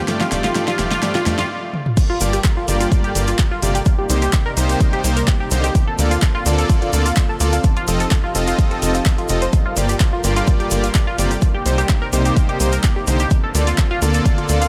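A progressive house excerpt with an expansive, emotional mood, opening on a two-second build-up where a deep house drum kit plays a fill under a soft supersaw stabbing on an F7 chord, before a brief stop and the drop at 2.0 seconds. From there the harmony cycles through Gm7, Cm7, Bbmaj7/D and F7, carried by a detuned analog pad holding sustained chords in the background with chorus and a moving notch, and by the supersaw's unison stabs with a sub octave and dub echo. A tight sequenced synth plays driving, detuned arpeggios with a filter pluck and dub echo, while a punchy, nasal sequencer bass drives the low end up front. The drop brings in an overdriven electronic kick, layered and re-recorded in a large room so it sits deep and forward, joined by a grainy tube shaker in the background. The drum kit adds a fat snare, handclaps, metallic hats, toms and crash cymbal with a tape-warm tone, and sidechain pumping breathes through the pad, arpeggios, bass, stabs and the kit's hats, toms and cymbals, all set in light reverb and digital ambience.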